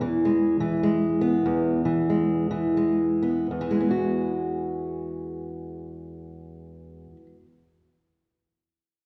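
A deep, reverberant hall sound with a long 1.6-second tail surrounds this hopeful, pastoral folk fragment, cut from a longer piece in E major and 3/4 with a swung eighth-note feel at 79-103 BPM. A fingerpicked steel-string acoustic guitar, dark and woody with the dull bite of old strings and placed up front, plays the whole accompaniment until 7.5 seconds, slowing down over the opening E chord. It moves to Eadd9 at 3.5 seconds.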